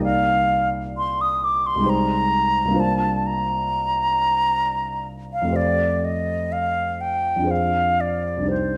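A mellow silver flute and a dark concert grand piano begin together, the flute carrying an airy, vibrato-touched melody with soft attacks over the piano's deep-bassed, intimate, vintage-toned accompaniment, where the sounds of its action can be heard. This mysterious, wistful impressionist duo moves in a rubato 3/4 at roughly 58-67 BPM, drifting from Cm9 through Abmaj7/C and Bbadd9/C toward Fadd9 and a closing Fm6 at 7.5 seconds. Both instruments sit up front in a moderate recital-hall reverb, with a dark, warm production across this short passage cut from a longer piece.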